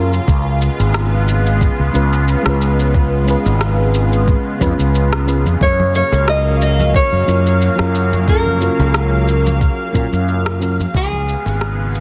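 Lightly reverberant and densely limited, this wistful sunset chillout excerpt sways at 90 BPM in 4/4 with a gentle 16th-note swing, tuned to A4 = 435 Hz, as a round, warbling FM electric piano with chorus and delay and a thick, detuned sawtooth pad with chorus and phaser hold C#7 and F#maj7 over a growly, up-front fretless bass, a soft electronic kick and a layered, tape-warm shaker and rim click with a clipped snare, before a fingerpicked nylon-string guitar carries the melody through delay from 5.6 s beside very quiet, bright congas and bongos, the recording fading out from 9.2 s.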